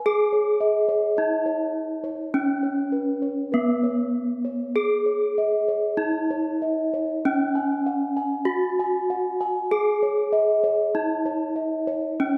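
A wet concert-hall reverb surrounds this short slice of a slow, shimmering and ceremonial gamelan piece in C# slendro at 48-54 BPM, where an up-front, close-miked bronze metallophone carries a bright, ringing melody full of beats from its paired tuning, while bossed gongs add round, metallic arpeggios for nearly all of its 12.4 seconds.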